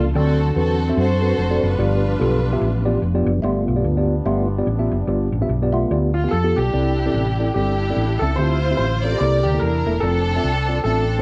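Dark, lightly reverberant production carries this jubilant, uplifting gospel excerpt at 146 BPM with a swung 4/4 feel, where a round, punchy hollow-body electric bass sits up front beneath a mellow, clean tine electric piano, a lush sul tasto string section sings a woody melody, and a soft, flute-like tonewheel organ with key click and slow rotary speaker takes a solo from 3.4 s over a vintage French horn section in the background, before an intimate concert grand piano with audible action noise takes up the melody at 6.1 s, with the strings returning just after, across a closing run of C6/9, Dm11, C13 and F6 chords.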